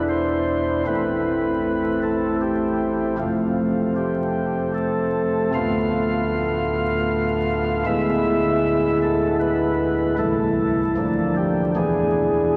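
Grave and solemn, this chorale-style classical piece for solo pipe organ moves in a rubato 3/4 around 77 BPM in A minor, its harmony passing from Am through F and Bm7b5/D before settling back toward E7 at 11.8 seconds. The organ's soft flute stops, voiced in a baroque manner, sit up front with a gentle chiff and a tremulant, reaching from deep bass notes up to the treble. A long, wet cathedral reverb surrounds the playing and vinyl crackle adds an aged surface across this 12.6-second fragment cut from a longer work.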